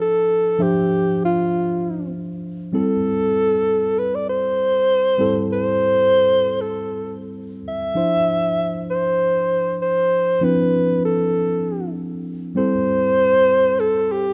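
A breathy, mellow alto saxophone plays a jazz-style solo melody with vibrato, scooped notes and a smooth top, up front over a worn, slightly out-of-tune tine electric piano that accompanies through a combo amp with a phaser on Dm9 and Am7 chords, in a smooth, bittersweet soul passage with a gentle sixteenth-note swing, cut from a longer piece and heard as a rough home demo mix with light reverb.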